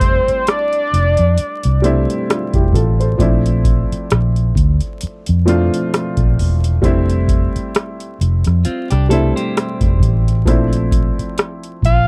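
A fat, detuned analog lead with chorus and slapback echo opens this smooth, soulful neo-soul excerpt in F major at a slow 66 BPM. Beneath it sit a dark, worn baby grand piano with audible action noise, a round, foam-muted fingered electric bass, and a booming analog drum machine with deep kick, metallic hi-hats and rim clicks, all swung on the 16ths. The lead drops out after 1.8 seconds, leaving the band to move between F6 and Bbmaj9 chords, while a clean, picked electric guitar adds a soft second line from 8.7 to 10.4 seconds before the lead returns briefly at the close, all in a dry, close 1970s-style studio sound with vinyl crackle.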